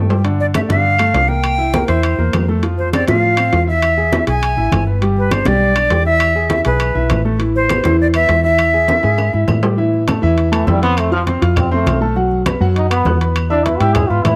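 Salsa with a driving, passionate feel, cut from a longer piece, built on a clear, smooth grand piano with long sustain and a dark, round fretless electric bass touched by ensemble chorus, while ringing metal-shell timbales sit close and dry over low-tuned congas and woody claves further back. An airy silver concert flute with vibrato and a crisp attack carries the melody up front until 9.4 s, and after a drum fill a punchy, roomy trombone takes a solo from 10.5 s to the close. Light reverb adds a sense of space.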